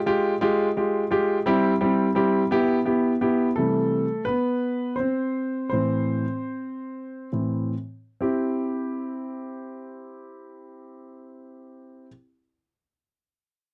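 Pop in 6/8, romantic and tender, carried by a lone concert grand piano in a fragment cut from a longer piece. The piano sounds intimate and up front, with deep bass, a natural tone and audible action noise, set in a dry, close 1970s-style studio with moderate booth ambience. It opens on an Fmadd9 chord, settles onto C, and slows down between 3.6 and 8.2 seconds before coming back to C.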